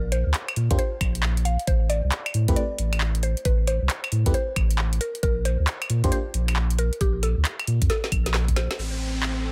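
UK garage two-step excerpt at 135 BPM in A phrygian with a soulful, skippy swing, where a thick saturated sub bass sits up front beneath a knocking electronic kick and a small-room garage kit of claves, finger snaps, handclaps, metallic hi-hats and a woody snare, while a round mallet-like synth pluck carries the melody and glassy, bell-like FM electric piano stabs drift through chorus, phaser and dub echo over Am chords, until a drum fill at 7.9 seconds gives way at 8.8 seconds to a falling downlifter and a lush, dark bowed string section pumping with sidechain.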